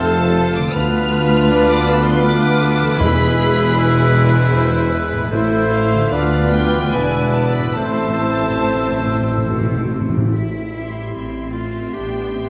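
A full symphony orchestra opens at once in a slow, solemn romantic movement in triple time, cut from a longer piece, its pulse flexing with yearning rubato. A smooth, even violin section carries the melody up high, while a clarinet, a pure flute section, a rich chamber violin section and a distant oboe weave second lines in the background. Beneath them, an intense but very quiet viola section and a mellow bassoon fill out the accompaniment, dark horns hold sustained chords, a shadowy trumpet section adds tight stabs, and a ringing concert harp plays soft arpeggios. The bass rests on a lush bowed double bass section, a very quiet tuba and a focused cello section, with close, dry timpani joining at 3.0 seconds and playing a fill from 7.8 to 10.3 seconds. After the winds and brass fall away, the strings, harp and clarinet carry the closing moments, all bathed in a wet scoring-stage reverb.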